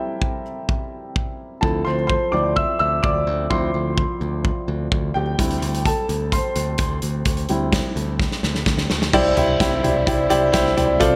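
A woody, intimate upright piano with audible action noise and a slightly detuned tone plays solo through the opening of this dramatic, bittersweet piano-driven pop excerpt in D minor at 128 BPM, with a loose, mid-forward small-room drum kit behind it that adds a fill at 8.2 s, a punchy picked electric bass holding the low end, and a very quiet bowed string section with vibrato and portamento entering at 9.1 s as the Am7 and Dm7 harmony gives way to Cadd9, set in plate reverb, with gated reverb on the drums and a bright 1980s-style digital production.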